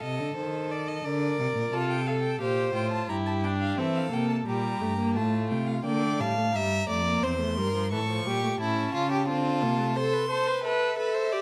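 In a straight, unhurried triple metre, this baroque-style fugue for string quartet carries a solemn, contemplative mood and is cut from a longer piece. The first violin sings the melody high above the ensemble with a warm, expressive tone, marked by vibrato, soft attacks and gliding portamento. A second violin traces a smooth, even line beneath it, its rich sound sitting up front, while the cello grounds the texture with a bowed bass line, expressive and close, with its own vibrato and slides. The viola joins at 1.7 s with a full-bodied, singing accompaniment, and the cello falls away at 10.0 s, after a new section has begun at 5.9 s. Close, detailed microphones capture each player's bow intimately, set within a moderate recital hall reverb that lends the quartet a gentle sense of space.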